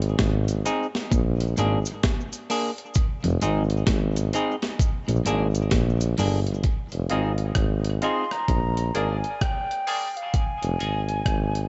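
A slow dub reggae groove in F dorian at 65 BPM opens on a warm, up-front tuba bass with vibrato and a gritty, overdriven sampler-style breakbeat kit with a thumpy kick, joined almost at once by a very quiet, slightly broken-up picked electric guitar riff, a dark, clean semi-hollow guitar with tape echo, and a dry cabasa in the background. The mood is deep and meditative as the harmony moves between Fm7 and Bb7, and after about 6.6 seconds the riff guitar and cabasa drop out under a filter sweep. Clear, worn grand piano stabs enter at 7.1 seconds, and a mellow, pure silver flute carries the melody from 8.0 seconds, all in a lightly reverberant, dull-topped mix cut from a longer piece.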